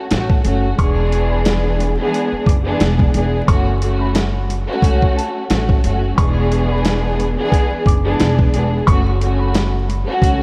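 A loping boom-bap groove with a lazy 16th-note swing sets the pace, carried by a dusty, sampler-style drum kit whose compressed, gritty sound pairs a thumpy kick with a medium-tuned snare and hi-hat. Alongside it, a woody pizzicato upright bass sits up front with a dark, rounded weight, anchoring a harmony that alternates between F# minor and E7 and gives the passage a reflective yet tough mood. A lush, bowed symphonic string section, also up front, supplies focused, vibrato-rich accompaniment with a smooth top, tinted by cassette-tape coloring and filtering. High above, a mellow upright piano plays a short-sustained melody from the background, softened by subtle chorus, filtering and delay. The whole mix is dreamy and soaked in a moderate church reverb, with vinyl crackle adding to its aged character across this 10.4-second excerpt cut from a longer piece.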